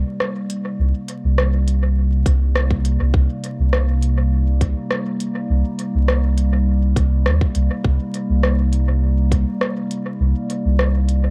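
Ambient dub with a hazy, spacious mood, cut from a longer piece and held on a single minor-seventh chord, where a warbling, nostalgic pad with chorus and built-in reverb sustains dark, lo-fi chords over a deep, round, soft sub bass sitting up front with tube saturation, while a crisp electronic kit of hi-hat and rim click plays through a dub echo, a tight, tape-warm electronic kick joins at 2.3 s and stops at 9.4 s, and vinyl crackle coats the home cassette recording.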